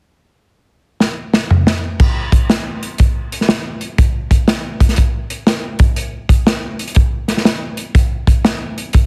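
A drum fill opens this soul excerpt at 1.0 s, and the acoustic kit then settles into a danceable, swung groove at 121 BPM in 4/4 from 2.0 s until the cut at 9.1 s. The kit sits up front with a punchy kick, a medium-tuned snare, toms, hi-hat and dark cymbals in an airy studio room, sounding polished and natural. The dry mix carries a heavily compressed, radio-style sheen.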